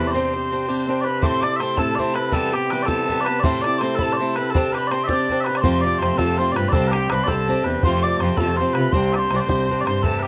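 Celtic folk jig in 6/8 at 109 BPM in C major, bright and cheerful, where sweet, vibrato-laden small bagpipes carry the melody up front with plate reverb, an airy wooden whistle with a soft attack adds a second line, boxy fingerpicked swing-style acoustic guitar accompanies, a tight, dry bodhran enters at 1.2 seconds, and a dark, woody bowed cello plays the bass, sounding briefly at the very opening and again from 5.6 seconds, all in this brief cut from a longer piece.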